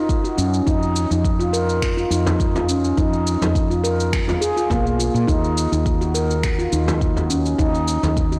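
Organic downtempo with a hypnotic, warm mood and a lightly swung feel, this brief excerpt opens on ringing, meditative handpan arpeggios carried by delay, set up front in a boxy small room, while a deep, tape-warm electronic kick and a low-level electronic shaker and finger snaps, with soft clipping on the snare, settle in almost at once. A dark, round, hollow-body woody fretless electric bass enters at 0.4 seconds, colored by tube saturation and sidechain pumping, and a large, deep acoustic frame drum joins at 2.3 seconds. The harmony moves from Ebm7 to F7(no3) before dropping away at 5.3 seconds, all within a blown-out, overdriven recording touched by light reverb and digital ambience.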